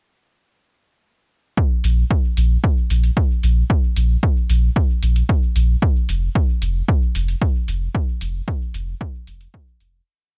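A punchy, overdriven electronic kick drum opens this cavernous and nocturnal dub techno piece at 1.6 s with an up-front four-on-the-floor pulse, joined moments later by a deep, round sine sub bass pumping off the beat under sidechain compression and a quieter layered, programmed hi-hat that also carries overdrive, all in a dry, bright 1980s-style digital production that fades out from 7.2 s.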